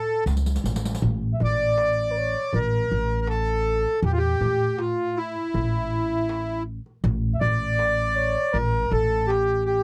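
Arabic maqam ensemble music in A maqam hijaz, this short excerpt moves at a straight 80 BPM in 4/4 with a soulful, longing mood. A reedy accordion carries the melody up front, its slow beating giving the tone a mid-forward glow, while a mellow flugelhorn plays a second line in the background with light vibrato, scooped notes and a jazz-style phrasing. An upright bass enters at 0.3 seconds, played pizzicato with a woody, steel-strung sound that sits up front. The darbuka, with its metal shell and crisp, vintage, band-limited tone, joins at the same moment from the background, and a riq with dark jingles plays briefly during a drum fill that lasts until 1.0 seconds, when the music opens into its longer second section. The recording has the dry, close feel of a 1970s-style studio with only light reverb.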